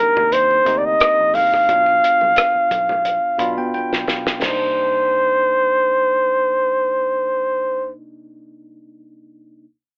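A warm flugelhorn leads this short, silky cut of lush 1970s-style soul, its soft-attack, vibrato-laced jazz line sitting up front from the first moment until 7.9 seconds. Beneath it, a bell-like tine electric piano rings bright and clean through the whole clip, moving from Cm9 to Bdim and back, and adds a fill just before the second section arrives at 4.4 seconds. A cloth-damped, thuddy drum kit with a fat snare, tight kick and dark cymbals plays only through the first half, its saturated, gritty tone capped by a drum fill leading into that change. Very quiet, damped congas with hard hands share the same early stretch, while a round, foam-muted fingered electric bass stays punchy but in the background. The whole piece carries a cinematic mood, softened by light reverb and filtered through a telephone-like sound.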